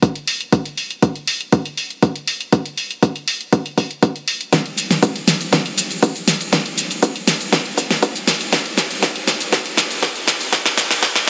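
Soaked in a huge, dreamy reverb with a high-passed sheen, this expansive, driving house excerpt at 120 BPM is a build-up with a filter sweep throughout, where a deep, high-passed electronic kick drum sits up front beside a deep house kit of sidechain-pumped hi-hat and shaker and a fat, tape-warm snare, and a drum fill arrives at 4.5 seconds.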